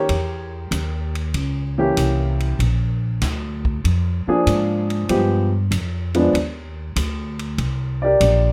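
A warm baby grand piano leads this short jazz piano trio cut from a longer piece, carrying the melody up front across the whole 8.5 seconds in a natural, close sound. The tempo is 96 BPM in 4/4 with swung eighth notes, set in B-flat mixolydian, and the mood is warm and swinging. The upright bass enters at 0.1 seconds with woody, thumpy pizzicato on gut strings, dark in tone and placed close to the listener. The drum kit joins at the same moment and sits further back, with dark cymbals on ride and hi-hat, a medium-tuned snare and a punchy kick that sounds like a big, natural room. The harmony moves from E diminished seventh to B-flat seventh, then G seventh with a flat ninth, and settles on a C seventh chord with the third omitted, all wrapped in a moderate studio reverb.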